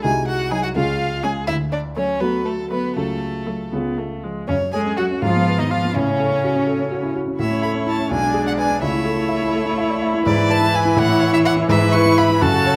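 A clear, up-front violin sings the melody with vibrato over a focused second violin and a dark, mellow grand piano with a vintage tone and short sustain, joined at 0.5 seconds by an intense cello line and a smooth viola accompaniment, in this cheerful, lively classical-period movement for piano quintet in F# minor, taken at 83 BPM in a rubato 6/8 and cut from a longer piece, captured by close, detailed microphones in a moderate large-studio reverb.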